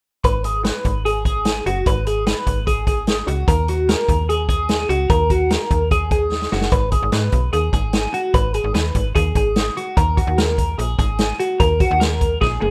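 Bittersweet and restless, this jangly indie pop excerpt at 148 BPM in G# minor pairs a bright, twangy twelve-string electric guitar picking phaser-tinged arpeggios up front with a snappy, metallic slap-like FM bass and a punchy vintage drum kit with a rolled-off top, moving between G#m and D#m in a rough home demo mix with studio reverb and drum fills at 6.3 and 12.4 seconds.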